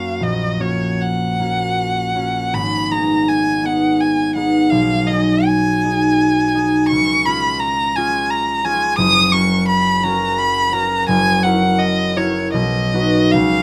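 This is a romantic classical duo for violin and harp, lyrical and warm in mood, moving in 3/4 at a flexible 72-88 BPM with a rubato feel in F# major. Both instruments play together from the start to the close at 13.6 seconds, in a short passage taken from a longer piece. A single bowed violin carries the melody high between C#5 and D#6, with a rich, smooth tone, even phrasing and vibrato. Beneath it, a concert harp supplies the accompaniment from deep F#1 up to B4, its thumb-plucked strings ringing with an acoustic glow. The harmony moves from F# over A# through G# minor and C# back to F#, then turns to F#7 and settles on B near the end. Both players sit up front in the mix, wrapped in a light reverb.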